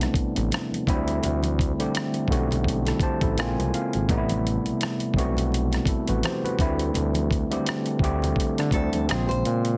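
Introspective and smooth, this short excerpt from a longer R&B and neo-soul piece moves at 84 BPM in 4/4 with a gentle 16th-note swing. An overdriven tine electric piano sits up front, its barky, gritty tone pushed through a combo amp as it carries the chords from Am9 through D7sus4 to Bbm9, and it adds a fill from 2.7 to 4.1 seconds. Beneath it, a smooth synth bass blends sawtooth and triangle with a fast attack and sustained notes, while a dusty, sampler-style drum kit brings a thumpy kick, hi-hat and rim click, compressed and placed forward in the mix. Very quiet, ringing congas with a small-room sound join at 0.4 seconds, and a full-bodied, fingerpicked nylon-string guitar slips in at 8.7 seconds with a brief second line. Light reverb and a heavily compressed, radio-like sound shape the whole recording.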